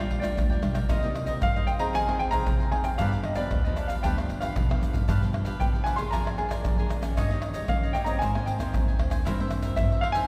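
Up front, a percussion section of deep surdo, pandeiro, tamborim and tube shaker is played with hard hands, adding a fill at 4.7 seconds to this bittersweet, yearning samba and choro fragment cut from a longer piece. A dark, mellow baby grand piano carries the melody in short-sustained notes over crisp picked cavaquinho and a classical, fingerpicked nylon-string guitar with audible finger squeak, while a woody pizzicato upright bass sits in the background. The harmony drifts through minor sevenths toward Abadd9 and C7/G, and a wet church reverb casts a long, hall-like glow over the whole performance.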